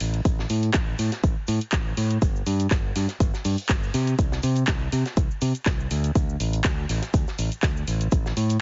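This joyful, feel-good piano house excerpt moves at 122 BPM in 4/4 with a light 16th-note swing. A bright, up-front fingered electric bass pumps against the sidechain from the start, while a house kit supplies handclaps, warm hats and shaker, and a very quiet acoustic studio kit adds hi-hat, shaker and a medium-tuned snare with a rolled-off top. A punchy, layered electronic kick arrives at 0.3 s; the dry mix carries a heavily compressed, radio-like sound with its highs cut off at 7.6 kHz.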